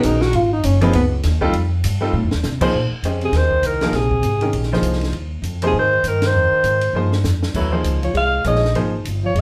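A breathy, up-front alto saxophone carries the melody in this searching, cool slice of modal jazz, entering at 3.2 seconds with scooped notes, a subtone and a vintage jazz voice soaked in plate reverb. Before it arrives, a dark, whispered tenor saxophone opens with a short, intimate solo statement, then returns alongside the alto as a second line, its vibrato, soft attack and smooth top sitting further beneath. A clear baby grand piano with short sustain comps up front until 8.9 seconds, while a woody, growly pizzicato upright bass on steel strings anchors the swung 4/4 feel. A compact cocktail kit, recorded tight and natural with dark cymbals, a high-tuned snare and a punchy kick, adds fills near 2.1 seconds and a band accent lands partway through. The whole group is heard from further back in a reverberant studio room, moving through suspended ninth and dominant seventh harmonies in a fragment cut from a longer performance.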